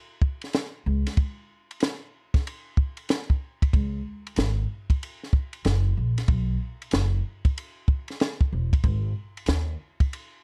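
A compact cocktail drum kit opens this cool, nocturnal jazz-hop excerpt at 0.2 seconds, its dry, up-front sound built from a punchy kick, high-tuned snare, hi-hat and dark ride cymbal swinging at 94 BPM in C# minor, before a woody, plucked upright bass with steel strings enters at 0.9 seconds in a close, dark mix with little reverb.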